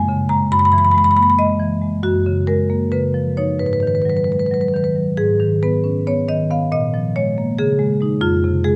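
Close, detailed microphones and a light touch of reverb place a single marimba up front, its tone dry yet full, struck with medium hard mallets. This contemporary classical piece for solo marimba is reflective and hypnotic, moving in a rubato 7/8 that lets the phrases breathe rather than march. The instrument spans a broad register from F2 up to B5, so deep resonant bars sit beneath brighter upper notes. The harmony drifts through colourful extended chords such as F#add9, Emaj7#11 over F#, C#9 and G#m7. A repeat of the opening idea begins at 5.2 seconds and moves through G#m, A#m7 and C#sus2 before settling on Fm near the 8.2-second mark. The 8.8-second excerpt is cut from a longer work and captures the marimba's intimate, meditative character.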